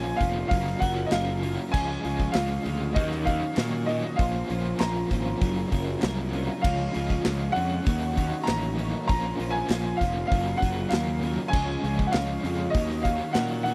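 A dry, close recording in a 1970s studio style, with little reverb, frames this carefree, upbeat indie rock cut from a longer piece, moving at 98 BPM in a straight 4/4 in Db major. Up front, a growly, fuzz-laden fingered bass that is overdriven sounds from the opening, and a big acoustic rock kit with bright cymbals, a medium-tuned snare and a punchy kick joins it at 0.2 s to drive the groove. A clear, woody upright piano, slightly detuned and touched with slapback echo, carries the melody high in its register. Behind it, two guitars play riffs: a twangy, slightly broken-up guitar through a small old amp with ensemble chorus and slapback echo, and a warm overdriven semi-hollow guitar with tremolo. A very quiet vintage combo organ holds sustained chords with heavy vibrato, while crisp group handclaps sit in the background from 1.1 s. The harmony cycles through Bbmadd9, Gbmaj7, Db and Ebm7 across the whole passage.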